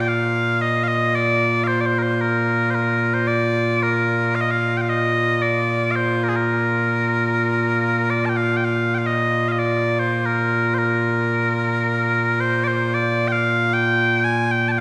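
Stirring and proud, this cut from a longer piece of Scottish traditional pipe music moves at 112 BPM in a straight 4/4 in Bb major. Mellow small bagpipes play alone and up front from start to finish, their sweet, continuous tone carrying vibrato. The playing sits in a church or concert hall, bathed in a lush reverb with a 1.9-second tail, and the tune shifts into a new section at 8.6 seconds.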